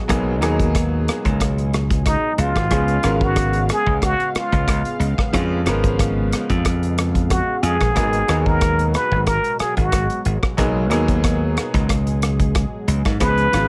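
A dry, close-sounding excerpt of driving, slick electric jazz fusion in a lightly swung 4/4, moving from G#m9 to C#7 and back. A punchy, up-front slap bass and a dark, smooth studio drum kit with tight kick, hi-hat and rim click anchor the groove, while a brilliant concert grand piano comps and a warbling, detuned analog pad with chorus holds brassy chords in the background. At 2.1 seconds a plunger-muted trumpet enters with an intimate, breathy, wah-wah solo melody touched with vibrato.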